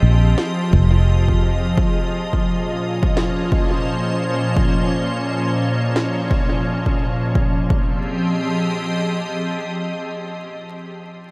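This hazy, meditative ambient dub fragment opens on a soft, organ-like pad holding sustained chords, its pure, detuned tone thickened by ensemble chorus and its own reverb, sitting up front and bright over an Fm7 that moves to Bbm11 at 1.8 seconds. Beneath it, a dark, round fingered electric bass sounds only briefly, playing until 1.7 seconds with a foam-muted, direct and amped character. At 86 BPM in 4/4 with a swung sixteenth feel, an electronic snare with a woody tone drifts in the background through a dub echo and small room ambience, while a punchy, layered kick, gritty with overdrive, carries on until 7.9 seconds. The key is F minor, and the harmony returns to Fm7 at 7.3 seconds; once the kick stops, the pad rings on alone to the close. The whole mix feels dreamy and soaked in a huge, long-tailed reverb, with vinyl crackle adding texture to this short cut from a longer piece.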